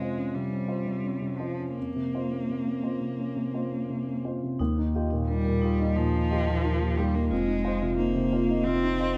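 A bowed solo cello sits up front, its smooth, even tone and gentle vibrato carrying a second line between F3 and C4 in this melancholic, reflective neoclassical fragment cut from a longer piece. Alongside it, equally up front, a dark, boxy grand piano plays the accompaniment from the start, its long sustain spanning Eb2 to C5. The music moves in a rubato 4/4 at 88 BPM, in Bb dorian tuned to A4 = 439 Hz, passing from Bbmadd9/F to Ebadd9 and then Fm7. At 4.6 seconds the opening phrase repeats and two parts join. A vibraphone played with soft mallets and the motor off adds ringing, metallic arpeggios from Eb4 to Eb5, touched with a slapback echo, while a deep, thick, saturated sub bass with a fast attack sustains low notes from F1 to Eb2. Light reverb frames the ensemble until the fragment ends at 9.2 seconds.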